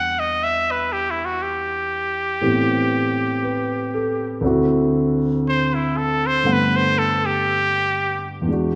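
A muted trumpet and a dark concert grand piano begin together at 0.0 seconds in this brief, romantic, late-night jazz ballad, cut from a longer piece and moving at a slow, swung pace. The trumpet, fitted with a straight mute, carries the melody as a solo, its tone nasal and breathy with a brilliant edge, a smooth top and vibrato in the jazz manner. Beneath it the piano supplies mellow accompaniment with deep bass, its sound sitting up front alongside the horn. The harmony passes through Em7, Am9 and D9 before settling on Gmaj9. The trumpet falls away at 8.3 seconds, leaving the piano to finish at 8.8 seconds, all bathed in the wet reverb of a scoring stage.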